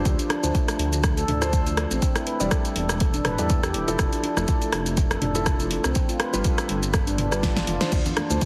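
Afro house at 122 BPM in D dorian with a 16th-note swing and an earthy, warm mood, this short cut from a longer piece sets a ringing, meditative handpan arpeggio and soft felt-muted upright piano stabs, both carrying dub echo and sidechain pumping, over a dark, rumbling detuned saw bass, an up-front tape-tinged deep house kit with a fat snare, rim click, shaker, hi-hat, toms and crash, and a deep electronic kick, moving through Dm7, Em7, Fmaj7 and G7 before a drum fill at 7.4 seconds and a brief touch of very quiet congas from 7.9 seconds, all under light reverb and a heavily compressed, radio-like sound.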